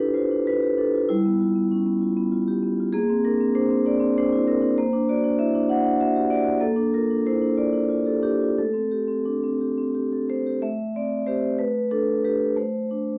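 Moving in a rubato 6/8 at roughly 57-66 BPM, counted in dotted quarters, this contemporary classical piece for solo vibraphone has a flowing, reflective mood. The lone vibraphone, struck with medium hard mallets and with its motor off, sits up front with a metallic, ringing tone that stays dark and smooth across its range from G3 to F#5. Centred on A dorian, the harmony drifts from Dmadd9 through G7 and Bbadd9 to an Am7 at 8.6 s. Around 10.6 s the music turns to a new passage colored by suspended chords over A. Light reverb and a dusky production surround the instrument in this short section cut from a longer work.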